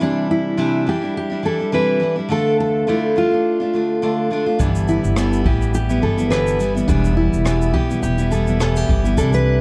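Acoustic pop with a heartfelt, sunny mood, moving at 105 BPM in 4/4 with a gentle swing on the sixteenths. This is a short excerpt from a longer piece. A fingerpicked jumbo steel-string guitar carries the melody in a narrow middle register, touched with plate reverb. Beneath it, a picked dreadnought guitar sits up front, full-bodied, and supplies the accompaniment through chords of Cadd9, Dm, G6 and Em. At 4.6 seconds a pizzicato upright bass joins, woody and thumpy, along with a brushed drum kit in a studio room, whose boomy kick, rim clicks and shaker sit lower in the mix. The production is dark and warm, with light reverb around the whole ensemble.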